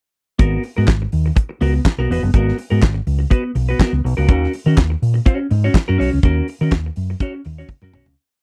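A dry, close 1970s-style studio sound frames this short, sultry and driving disco groove, where a damped drum kit with a fat snare layered with handclaps and a four-on-the-floor beat with open hats on the off-beats sits up front beside a round, punchy fingered electric bass playing a syncopated line, while a bright, twangy clean electric guitar adds choppy sixteenth-note playing over G#m9 and D#m7 before the piece fades out from 6.2 seconds and a drum fill closes it at 8.2 seconds.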